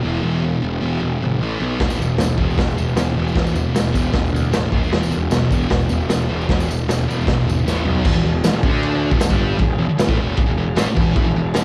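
A straight, driving 4/4 at 154 BPM carries this raw, swaggering garage rock clip in E minor, opening with a thick, double-tracked fuzz guitar riff up front over a growly, overdriven picked bass. The saturated drum kit with its punchy kick crashes in at 1.8 s, a jingly tambourine sits distant in the background, and a drum fill at 7.7 s leads into a new section at 8.1 s that settles on E minor. The home cassette recording lends the guitar and drums a tape character, with the gritty kit up front in a pumping small room and its top rolled off.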